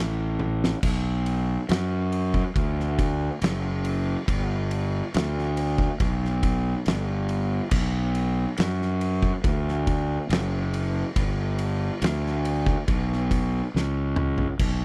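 A dry, close 1970s-style studio sound frames this sludgy, hypnotic stoner and doom metal excerpt in a steady 4/4. A growly, overdriven fuzz bass sits up front from the start, fingered low between F#1 and F#2 with a bright, direct and amped edge. An oversized, low-tuned acoustic kit enters at 0.4 seconds with a fill and is dark, gritty and saturated, with a fat snare, punchy kick, crash, ride and toms, before a second fill arrives at 13.7 seconds.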